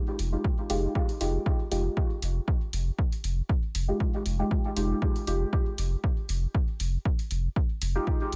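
A soft, detuned, dark chord stab on an Fm9 opens this cavernous, hypnotic dub techno excerpt, its sound colored by chorus, phaser, dub echo and sidechain pumping, before a round, pumping sub bass and a layered electronic hi-hat join at 0.2 seconds and a dry, punchy kick sits up front from 0.4 seconds in a lightly swung groove and an echo-heavy mix with little reverb.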